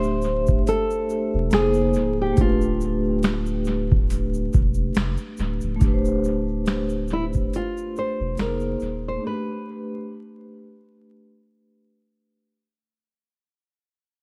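Lo-fi hip hop at 70 BPM in D dorian, melancholic and nostalgic, cut from a longer piece, where a bright fingerpicked nylon-string guitar carries the melody over a ringing vibraphone accompaniment with slow motor vibrato, a round sub bass and a booming, overdriven analog drum machine of deep kick, crisp snare, metallic hats, finger snaps and shaker, all in an echo-heavy mix with vinyl crackle that fades out from 5.8 seconds, with the drums dropping out at 9.0 seconds and the bass at 9.2 seconds into a break on an A9sus4 chord.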